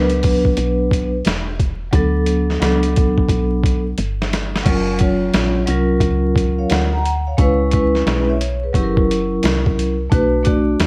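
Jazz-hop at 88 BPM with swung 16ths, this cool excerpt features an up-front vibraphone played with soft mallets, mellow, airy and ringing with a slow motor vibrato, over a round, dark FM bass with a woody, fast-attack, decaying tone and a gritty, compressed, pitched-down boom bap kit of thumpy kick, medium-tuned snare, hi-hat and crash set in a large room, where a drum fill at 4.0 seconds leads into a passage moving from F#maj7 through C#m7 and F#7 to Bm7 beneath a haze of worn cassette-tape warble, vinyl crackle and drifting pitch.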